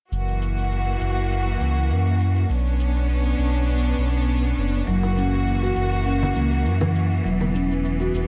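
Rich, bowed studio strings sustain chords over a mellow, gliding sawtooth synth bass carrying a filter sweep and a tape-tinged electronic shaker in this hypnotic, meditative organic downtempo excerpt at 101 BPM with a gentle sixteenth-note swing, moving from F#7 to Bmadd9 before a woody rosewood marimba with 12-bit sampler grit and digital delay enters on arpeggios at 4.9 seconds and soft-handed, bright bongos and congas join in the background at 5.0 seconds, all within a light reverb.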